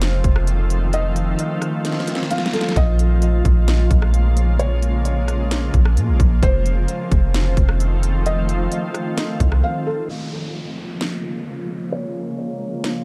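A hazy, ethereal cloud-rap excerpt opens with a half-time trap kit, its hard-clipped kick, sharp snare and crisp hats up front, beside a round, deep 808-style bass and a shimmering, detuned pad that pumps under sidechain through chorus and reverb. A felt-muted upright piano carries the melody, boxy and intimate with audible action noise, softened by a low-pass filter and digital delay. A drum fill lands at 1.8 seconds, the bass drops out at 9.6 seconds for a brief break, and from 10.1 seconds an electronic downlifter and a filter sweep close out this dark, digital-sounding passage.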